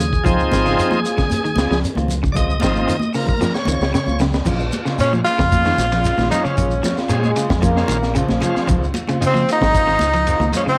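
Hypnotic and defiant, this afrobeat excerpt opens with a shouting tonewheel organ solo through a slow rotary speaker, over picked clean guitar arpeggios with subtle chorus, dark slightly broken-up guitar stabs, a round dub bass, a gritty breakbeat kit with a fill, grainy shekere and high-tuned congas; a bright tenor saxophone takes the melody at 5.0 s with a clear, scooped-note trumpet behind it through analog delay, and a mellow trombone section joins at 7.1 s, all captured as a home cassette recording in a small room.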